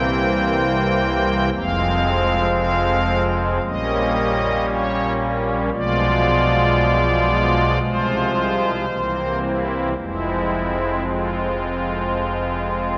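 The pulse is slow and elastic, a rubato 4/4 moving at around 57 BPM, giving this dark, solemn chorale-style classical piece a hushed, breathing gait. It is played on solo pipe organ using its string stops with a celeste, a soft, shimmering registration voiced in a romantic manner and placed up front, spanning from a low F1 to G5. Set in F minor, the harmony opens on C7, settles onto Fm at 1.5 seconds, then darkens through Gdim/Bb and Bdim7 before Fm/C, C7 and a return to Fm at 10.0 seconds. A deep cathedral reverb with a long 4.4-second decay surrounds the organ, while worn, old cassette tape adds a warbling pitch drift that makes the sustained tones waver. The 13-second passage is cut from a longer piece.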